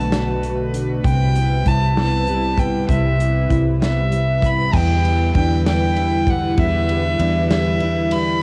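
A rich, floating violin sits up front with a soft, bowed attack, singing the melody high over an aching, melancholic six-eight pop ballad in E minor at 65 BPM, its tone colored by cassette tape and an analog delay. Behind it, a double-tracked, fingerpicked nylon-string guitar with audible finger squeak and a breathy, detuned pad with chorus hold the harmony through Bm7 and Cmaj7 before the shift to Em7 at 4.7 seconds. A dark, round, foam-muted electric bass and a natural country drum kit with a punchy kick, hi-hat, ride and crash anchor this short excerpt in a lightly reverberant studio room.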